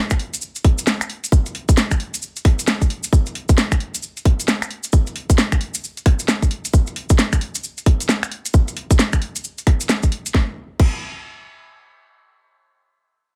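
Moody and soulful, this UK garage excerpt at 133 BPM swings its 16ths as a tight, tape-warm electronic kick sits up front, re-recorded in a large room, joined by a layered garage kit of cracking snare, finger snaps, warm hats and crash cymbal in a small room, plus a grainy, mellow cabasa, all over a digital ambience from a drop that runs until 10.3 seconds.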